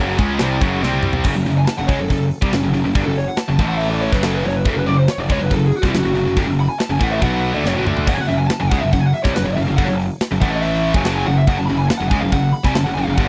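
A tight, up-front metal drum kit with bright cymbals and a medium-tuned snare drives this heavy, relentless heavy metal excerpt in 4/4, opening in half time with a fill before the main section kicks in at 1.3 seconds. Two bright, high-gain rhythm guitars, one sitting in the background, pound out a riff over a growly, fuzz-laden picked bass, while a dark, bluesy lead guitar with distortion and slapback echo solos from 1.6 seconds onward. The dry, close 1970s-style studio sound keeps every part immediate, with a second drum fill at 7.6 seconds.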